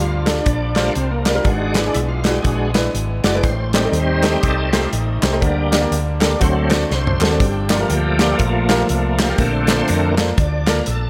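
A shouting tonewheel organ opens this solemn, fervent slice of uptempo gospel, taking the solo from the first moment with audible key click, a slow rotary speaker and chorus vibrato, up front alongside a round, punchy hollow-body electric bass and a present grand piano laying down the accompaniment. Beneath them, a muted French horn section holds very quiet, nasal, metallic sustained chords that sit distant and roomy in classical style. At 0.3 seconds an acoustic drum kit with a tight kick and medium-tuned snare kicks in with a swung feel, together with hollow, close group handclaps tucked in the background. The harmony moves through minor-seventh and dominant colours, and a short drum fill at 6.9 seconds leads back to the home chord before the passage settles on a major-seventh chord. A lush hall reverb with a touch of small-room ambience gives the short, cut-out passage a churchy sense of space.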